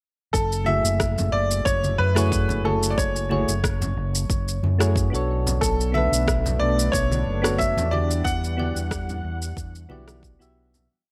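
A bright concert grand piano opens this short, smooth and wistful sunset chillout piece at 91 BPM in F# phrygian, playing a motif-based melody in song-like phrases through tape echo, alongside a round, punchy, overdriven fingered electric bass with a dotted rhythm that sits up front. An electronic kick drum and a light lounge beat of shaker and rim click, both overdriven, join at once, with ringing congas following in the background with hard hands in a small room. Soft electric-piano-like synth keys play mellow, syncopated rootless chord stabs, their detuned chorus, 12-bit sampler grit and filter sweep giving a gentle, hazy color. At 5.6 seconds a lush, thick, warbling unison pad enters with sustained chords, as the harmony moves from F#m9 to Bm9 and then Em9. Light reverb surrounds the groove, and a fade-out begins at 7.4 seconds, carrying the piece to its close just before 11 seconds.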